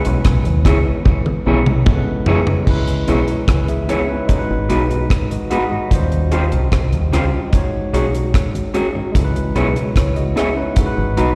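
Heard live through a venue's PA in a reverberant recital hall, this excerpt of smooth, longing lovers rock reggae at 74 BPM in C# minor puts a round, foam-muted fingered bass and a dry, dark drum kit up front, with a drum fill from 1.1 to 2.7 seconds, while a barky, lightly overdriven tine electric piano with slapback echo, a very quiet flute-like tonewheel organ with key click, and a slightly broken-up, lo-fi guitar entering at 0.6 seconds with tape-echoed stabs fill out chords moving from C#m7 through G#m7 and D#13.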